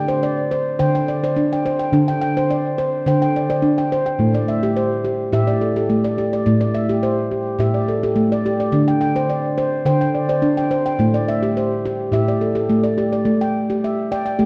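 A solo handpan carries this short excerpt, its nitrided steel played with the fingertips and sounding ringing, full and close-miked, placed up front. The mood is meditative and gentle, a world-music piece of tuned percussion in a straight 4/4 at 106 BPM, with the instrument spanning from A2 up to G5. A diffuse ambient delay trails the handpan's notes, and the whole recording sits in a wet echo chamber with a long, lingering decay. The harmony moves between D7sus4 and Am before settling on an open A5 at 13.3 seconds, and the handpan stops at 14.5 seconds. Over it all lies the worn character of old cassette tape, with a warbly pitch drift that gives the sound a hazy wobble.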